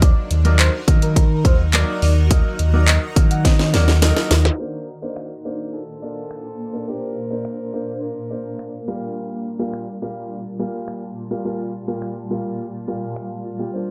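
A summery, carefree dance-pop excerpt at 105 BPM opens on a drop, with a punchy, up-front house kit of kick, cracking snare, hi-hat, handclaps and finger snaps driving a deep sine sub bass with octave, while a clear concert grand piano and a shimmering, ethereal pad pump under sidechain and an airy, dreamy lead with chorus floats in the background until 4.4 seconds. During a drum fill the bass drops out at 4.5 seconds, leaving the kit, the piano and the bright, detuned pad, which carries phaser and built-in reverb, to sustain the groove and harmony. A raspy, gritty alto saxophone with scooped notes and tape echo takes a short solo from 5.7 seconds.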